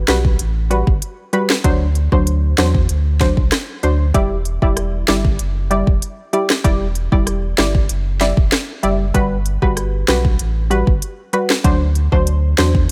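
Bouncy and hypnotic, this dancehall cut from a longer piece moves at 96 BPM in E minor, with a deep, sine-and-triangle sub bass with octave and an electronic afro-pop drum kit of deep kick, sharp snare, crisp hats and rim click sitting up front beside punchy sawtooth chord stabs that pluck and decay through chorus over Gmaj7, D7 and Em7, all in a dry sound.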